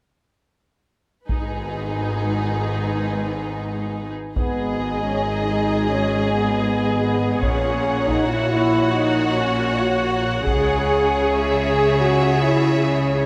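Distant, roomy French horns hold sustained chords through this dramatic, epic cinematic orchestral cue, cut from a longer piece, as a close violin section carries the melody with expressive vibrato and portamento over a smooth second violin line, lush violas, rich cellos and biting double basses, while a taiko ensemble played with hard sticks sounds until 11.3 s, set inside a moderate scoring-stage reverb.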